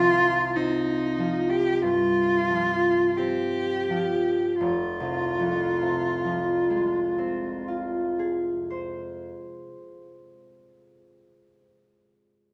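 Classical impressionist duo for cello and harp in F minor, wistful and hazy, cut from a longer piece and unfolding with rubato at a slow 40-50 BPM in 4/4, where an up-front, dark, woody bowed cello sings the melody with vibrato until 8.2 seconds while a bright, ringing, fingerpicked concert harp accompanies and then plays alone to 11.6 seconds, the opening slowing down over Csus4 before settling onto Fm at 4.6 seconds, set in the reverb of a wet stone room.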